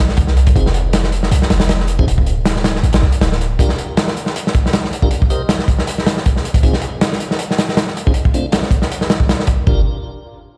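A deep, boomy 808-style bass opens this frenetic, dark drum and bass excerpt at 158 BPM with a light swing, sounding from the start until 3.6 seconds before a brief return at 9.7 seconds. A crunchy breakbeat kit enters at 0.1 seconds and sits up front for the rest of the clip, its hi-hat, tight kick and medium-tuned snare saturated and gritty with a rolled-off top. At 0.6 seconds a piping, scooped tonewheel organ adds stabs in G phrygian, quieter in the mix and coloured by a slow rotary speaker, vintage 12-bit sampler grit, a low-pass filter and dub echo. The harmony moves through Fm7, D5, Gm7, Cm7 and Dm7 before landing back on Gm7. The whole piece sounds as if played on a big sound system in a bare room, with small room ambience and a large studio reverb giving it a raw, jungle-rooted atmosphere.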